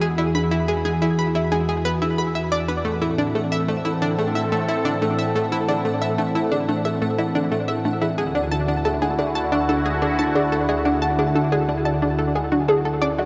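A bright, resonant sawtooth pad sustaining evolving chords opens this expansive, cosmic stretch of ambient, sequencer-driven space music at 90 BPM in D lydian, joined at once by an up-front, round analog pluck riff with a sub octave and delay and a faint pulsing, tempo-synced gated texture fading in on a high F#5, while from 0.2 seconds a warbling, lo-fi, detuned pluck plays mellow arpeggios under a filter sweep in the background, all moving through Eadd9, Am and Dadd9 in a wet, huge shimmer-reverb space.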